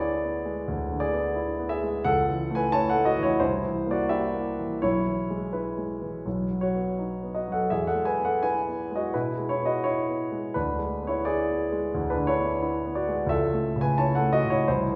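Classical romantic character piece for solo piano, this short passage from a longer work carries a passionate, hopeful mood at a flexible 86 BPM in 4/4, with rubato giving the phrases room to breathe. A grand piano plays alone throughout its 15 seconds, spanning from B1 up to A5, its tone present and polished with a short sustain and a close, up-front placement. The harmony centres on E major, moving from E7/D to A/C# and then a striking C7 before settling through E/B and B onto E at 7.7 seconds. The progression then circles back, returning to E7/D at 10.6 seconds and A/C# at 13.3 seconds, leaving the music open and searching. A wet recital hall reverb with an RT60 of 1.5 s frames the sound, heard from further back in the room.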